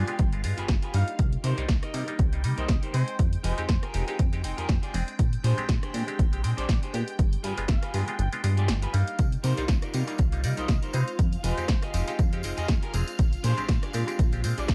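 A swung 120 BPM groove in 4/4 drives this nostalgic, sensual filtered disco house cut in C minor: a dry, overdriven electronic kick sits up front over a punchy analog drum machine of hi-hat, rim click and snare, with the kick dropping out from 8.2 to 9.2 seconds before a tambourine joins quietly in the background at 9.2 seconds. A plucky, funky sawtooth analog bass with tube saturation pumps beneath a hollow, nasal overdriven clav through a combo amp with phaser, a clean, picked electric guitar riff, and a swirling, vintage string machine with ensemble chorus and phaser holding sustained chords in the background. A veiled, cup-muted trumpet section carries the melody with light vibrato and dub echo through a cycle of G7b9, Cm7, Fm9 and Bb13, the dry mix breathing as every part but the kick pumps with sidechain compression.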